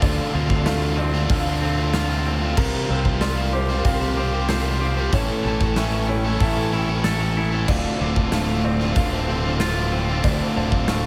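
From the first beat, a big rock drum kit with a punchy kick and bright cymbals drives this brooding, melancholic post-rock fragment at 94 BPM in D minor. An up-front, growling overdriven bass sits beneath two overdriven guitar riffs, one crunchy and bright, the other a raw garage tone further back. In the background, a twangy, clean electric guitar with subtle chorus and analog delay and a muted felt piano with audible action noise and its own delay play arpeggios, while a lush bowed string section with vibrato and portamento holds very quiet sustained chords, moving from Dm7 through C7sus4 and A7 back to Dm7 in a light small-room ambience.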